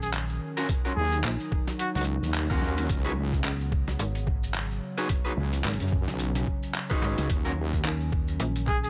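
A heavy, saturated wobble bass sits up front in this swaggering, playful glitch hop excerpt with a swung 16th-note feel, entering at 1.0 s over a snappy, metallic FM slap bass, a thumpy, pitched-down sampler kick, and a gritty boom bap kit of handclaps, hi-hat and medium-tuned snare alongside grainy maracas. A warbling, lo-fi pad holds dark, nostalgic chords that pump with the sidechain, moving from Ebm7 to Db7sus4 and back, while a slightly broken-up, twangy electric guitar plays stabs through dub echo. A clear trumpet with light vibrato carries a brief solo melody in the opening 2.0 s, its own dub echo trailing through a dry, close mix.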